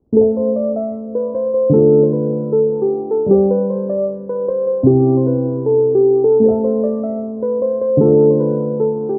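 A half-time 4/4 pulse at 153 BPM drives this dark, hard-hitting hip hop excerpt in A minor, where a mellow, natural-sounding grand piano with short sustain accompanies from 0.1 s and soft, round, detuned electric-piano-like synth keys carry the melody up front through chorus, tape echo and a filter sweep over Am, Dm, Gsus4 and C, all wrapped in a lush hall reverb, vinyl crackle and a low-pass filtered production.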